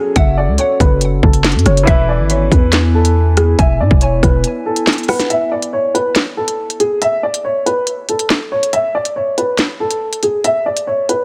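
Drill hip hop in a tense, ominous half-time groove, led by a dark, woody upright piano melody with digital delay over hard-clipped kicks, crisp hats, handclaps, rim clicks and a sharp snare, with a growling 808-style bass until 4.4 seconds, plus a bright concert grand in the background, ethereal glass harmonica chords and a hollow, chorused square pluck until 5.3 seconds, after which the chords drop out and only the piano and drums carry on in a dense, heavily limited mix.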